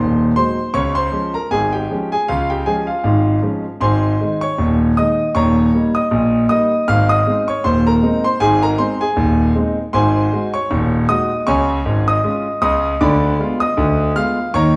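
A warm, up-front concert grand piano opens this jaunty, cheerful ragtime passage at 78 BPM in a swung 2/4 in Ab major, its deep, natural bass and upper reaches spanning Eb1 to F6 as it moves through chords from Ab7 and Db to Eb7 before a closing Ddim7 at 13.0 seconds, all heard in a wet stone room reverb and cut from a longer piece at 14.8 seconds.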